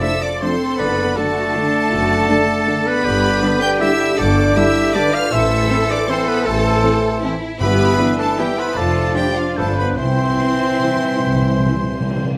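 A 3/4 pulse, pushed and pulled with rubato, carries this sweeping, festive classical passage in C major at roughly 134-173 BPM. It is cut from a longer piece. Focused chamber violins with vibrato sing the melody high above. A bright, intense, very quiet second violin section and a pure, straight-toned flute add their own lines, while a mellow oboe sits roomy and distant in the background. A solo bassoon and a smooth, lush viola section fill the accompaniment. Horns and a clear, very quiet trombone section hold sustained chords, and a vintage-toned trumpet adds stabs. Close, rich cellos and distant double basses, which enter at 0.8 s, anchor the bass. Soft-mallet timpani with round calf heads join at 7.6 s and play a fill from 10.0 s as the harmony settles onto C. The recital hall reverb is moderate, and close, detailed microphones capture the orchestra.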